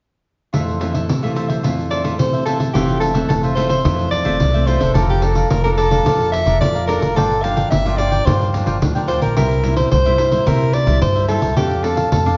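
Heard from further back in a large, reverberant studio with a dark, softened top end, this short cut of samba and choro moves at 109 BPM in F major with a playful, festive mood. A crisp, picked cavaquinho, a fingerpicked classical nylon-string guitar with old strings and a jingly, close, dry pandeiro start together at 0.5 seconds, and a breathy, subtoned soprano saxophone takes the jazz-style lead up front at 1.9 seconds. A woody pizzicato upright bass enters at 2.7 seconds as the chords move from Fmaj7 through Bbmaj7/F, Gm7 and C7 to F6.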